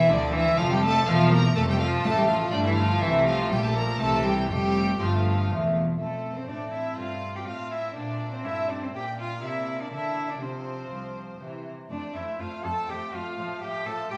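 A wet recital-hall reverb surrounds this brilliant, lively excerpt of a baroque-style concerto movement in 3/4, played with gut-string, period-style tone. An up-front solo cello with a rich, reedy voice shares the melody with a violin section carrying light vibrato. A second violin line fills in the texture, joined by a dark, nasal viola section and a delicate, fingerpicked lute with doubled strings in the background, while a warm cello section holds the bass alongside a close double bass section that drops out at 6.0 s, as the harmony moves from Dm toward F.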